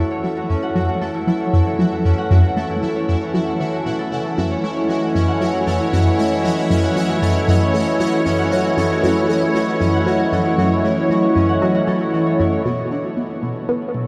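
A juicy, squelchy resonant blip pluck sits up front with a low riff, coloured by phaser, cassette tape and tape echo, in this hypnotic, cosmic stretch of sequencer-driven ambient space music at 116 BPM in F# dorian. Beneath it, a ringing, fingerpicked concert harp plays tape-echoed arpeggios, while an airy, chorused pad holds sustained chords and fades in alongside a bright, pulsing gated texture with chorus and its own reverb. A huge reverb gives the dark production a cosmic depth as the harmony rests on F#m7 before moving to Bm7 at 12.7 seconds, where the pulsing texture drops out.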